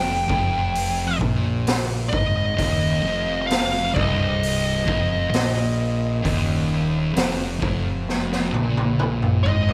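A double-tracked fuzz guitar riff sits up front in this heavy, brooding stoner and doom metal passage, its distorted tone churning low between C2 and Bb2. Above it, a compressed fuzz lead guitar picks a melody high in the range from Eb5 to G5, also placed close to the listener. A dark, round fingered bass adds overdriven weight far beneath, a little further back in the mix. The raw garage drum kit comes in at 0.3 s with a punchy kick, a medium-tuned snare, hi-hat and toms, its gritty, saturated sound heard in a small room with a rolled-off top, and a drum fill runs from 8.1 s to the close. Cut from a longer piece, it sounds like a band playing live together in one room, with light reverb around the parts.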